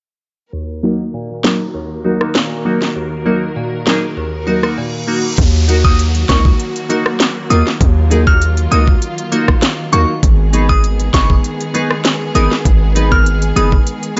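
Muffled digital ambience frames this hypnotic, tough dancehall excerpt in Eb minor at 99 BPM, which moves from Ebm to Abm. A crystalline wavetable pluck with chorus and a filter sweep and pumping studio strings bowed sul tasto with vibrato open the piece, and a full-bodied, fingerpicked nylon-string guitar with finger squeak and delay follows at 0.8 seconds; at 1.4 seconds they are joined by an up-front electronic drum kit with a knocking kick, sharp snare and smooth hats, which drops out briefly while a reverse cymbal and downlifter lead into the next section. From 5.4 seconds a punchy, heavy 808-style bass arrives, and from 5.8 seconds a glassy FM synth bell with chorus and delay carries the high melody, until a short break at 13.9 seconds.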